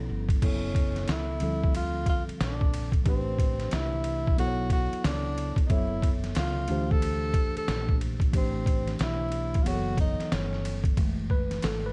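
A swung, sampler-style drum kit with a thumpy kick and gritty, pitched-down crunch sits up front in this nocturnal, mellow jazz-hop excerpt, beneath a round, woody fretless bass, a worn and slightly out-of-tune tine electric piano, and a breathy tenor saxophone melody with light vibrato and scooped subtone notes, in a dry mix dusted with vinyl crackle.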